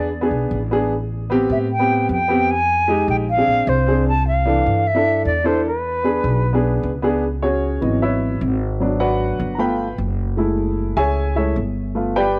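A small-room home cassette recording with tape coloring on the flute and piano, this sultry, fiery jazz fragment from a longer piece moves at a straight 152 BPM in 4/4, settling into C# minor at 7.2 seconds. An airy, close-miked concert flute carries the melody up front with vibrato and a soft attack until 7.0 seconds, over a natural-sounding baby grand piano's accompaniment and a woody, thumpy pizzicato upright bass on gut strings. The piano then takes a solo from 7.2 seconds to the close, moving through rich extended harmonies such as C#m11 and F#m9 with the bass still underneath.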